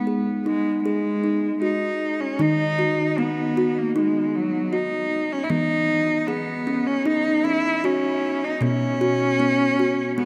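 A long cathedral reverb, about 7.3 seconds of decay, surrounds this short cut from a longer piece of meditative world music built on tuned percussion. At 77 BPM in a straight 4/4, tuned to A4 = 438 Hz, the mood is hypnotic and gentle. A kalimba plays arpeggios from B2 to G#4 throughout, its short thumb-plucked notes woody and dark from a solid board, sitting up front. A bowed cello, played by one player, carries the melody between F#3 and E4 with a clear, focused tone and vibrato, also up front and trailed by a diffuse ambient delay. The harmony opens on G#5, then shifts at 2.4 seconds into a new section that moves through D#m and E before settling on B5 at 8.6 seconds.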